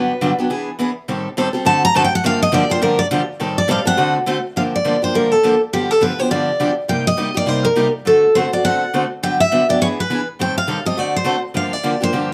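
A bright, full-bodied steel-string acoustic guitar leads this bittersweet, virtuosic swinging jazz fragment with a solo through the first 4.6 seconds before carrying the melody on, while a picked archtop guitar, up front with audible finger squeak, comps through minor-key changes under close, detailed microphones and moderate studio reverb.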